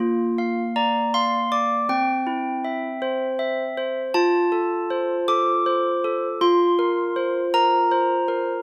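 A moderate studio reverb surrounds a close-miked, up-front solo of handbells in this short classical lullaby fragment in a straight 6/8, their bright, ringing tones struck with hard clappers spanning Bb3 to D6 as the harmony moves from Bb through C to F and settles on Fsus4, for an innocent, tender mood.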